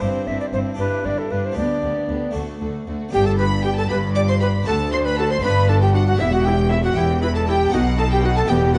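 Set in a dark production with a moderate recital hall reverb, this lively, sparkling fragment from a baroque-style concerto movement moves in 6/8 at 78 BPM by the dotted quarter in G major, shifting to a new section at 3.1 s and closing on a B7 chord. An airy, up-front alto recorder with a crisp, chiffing attack and lifted highs carries the melody alongside an intense, vibrato-rich chamber violin section, while a lush studio violin section plays a second line in the background. A full Italian-style harpsichord with three sets of strings and a focused viola section fill in the accompaniment, over a distant, even cello section and a smooth, up-front symphonic double bass section holding the bass.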